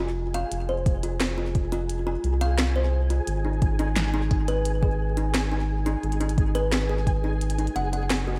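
A bright, 1980s-style digital production with light reverb frames this brief, cerebral and melancholic IDM fragment cut from a longer piece. A woody, hollow kalimba plays arpeggios through digital delay over a round, dark analog bass with tube saturation, while a grainy, flickering granular texture sits behind them in its own reverb. A glitchy drum kit of tiny snare and clicky hats, up front with gated reverb and delay, comes in at 0.3 seconds, and a deep, tape-warm electronic kick joins at 0.9 seconds before dropping out at 7.2 seconds.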